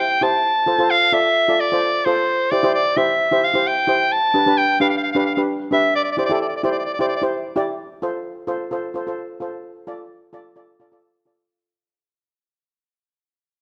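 A clear soprano saxophone carries the melody up front in a classical style, its soft attack and vintage vibrato ringing between C5 and A5 until it stops at 7.2 seconds. This short calypso clip in F major moves at 131 BPM in a straight 4/4, with a festive, bouncy mood. A double seconds steel pan, played with medium rubber sticks, supplies the accompaniment throughout, its metallic, shimmering tone dark and smooth as it sits up front between D4 and D5. The harmony passes through F, C, G and Cadd9 before returning to F and moving to Dm, and the pan carries on alone as the clip fades out from 7.8 seconds to its end at 11.5 seconds. Close, detailed microphones and light reverb shape the recording.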